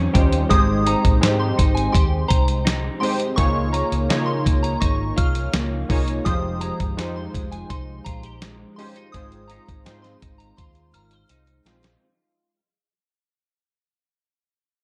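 Nostalgic and hazy, this indie and bedroom pop passage is cut from a longer piece and moves at 83 BPM in a straight 4/4, in Ab major and tuned to A4 = 438 Hz. A dusty, sampler-style drum kit sits up front with a gritty, compressed sound, a thumpy kick, a medium-tuned snare and hi-hat, heard as if re-recorded in a large room, and it plays a fill from 10.6 s. Beneath it, a foam-muted fingered electric bass gives a dark, round, punchy low end. Warm analog keys with detuned sawtooth and square tones, a sub octave and a filter sweep lend mellow accompaniment through chorus, while a clean semi-hollow electric guitar adds hollow-body colour through analog chorus and vibrato. A soft FM synth bell enters at 0.5 s with a pure, warbling line high above, trailing analog chorus and delay. The chords drift from Eb13 through Abmaj7, Db69, Fm9 and Ab6 under light reverb as the passage fades out.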